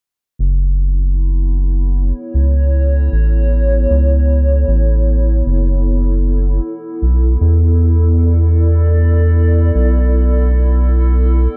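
Set in a digital ambience, this hazy, meditative ambient dub cut opens with a round, deep analog bass that sits up front from 0.4 seconds, dark and sustained with a fast attack. At 1.2 seconds a warbling, nostalgic tape-like pad joins quietly in the background, holding detuned, lo-fi chords softened by chorus and reverb with a slow attack and long release. The harmony shifts once, at 6.6 seconds, giving the meditative drift a gentle turn.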